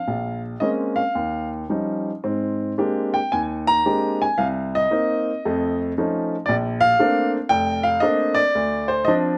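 A warm baby grand piano plays alone and up front in this relaxed, playful solo jazz clip in Bb major, moving at about 113 BPM in 4/4 with a swung, rubato feel. Its natural tone and long sustain span from F1 to Bb5 over lush changes such as Bbm9, Eb9, Abmaj9#11 and Faug7 before settling on Bbmaj9 and then Dm7. The sound is dry and open, as if captured outdoors, and the 9.4-second passage is cut from a longer piece.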